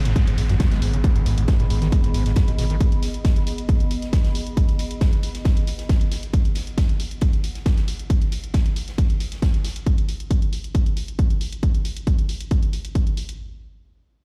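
A driving, straight 4/4 pulse at 136 BPM anchors this relentless, dark peak-time techno fragment in G# minor, where an overdriven, up-front kick running to 13.0 seconds and an analog hi-hat running to 13.4 seconds sit beneath a squelchy, screaming acid riff with a filter sweep, a saturated sine sub bass and a background downlifter that all stop at 2.8 seconds, while a warbling, nostalgic, lo-fi pad fades out by 9.9 seconds alongside an airy acoustic kit's dark ride cymbal and snare, all set in a big, reverberant room sound.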